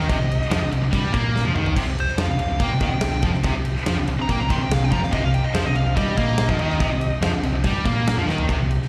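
Driving and heavy, this hard rock excerpt in C minor charges along at 143 BPM, with a nasal, overdriven lead guitar through a parked wah and tape echo carrying the melody until 7.2 seconds. Beneath it, a bright cranked stack guitar and two high-gain distorted guitars, one with slapback echo in the background and one double-tracked and very quiet, churn out the riff over a growling, fingered electric bass with overdrive. A huge arena drum kit sits up front with a punchy kick, crash, snare and toms and throws in fills at 1.4 and 8.3 seconds, all heard live through the venue's PA with a recital-hall reverb.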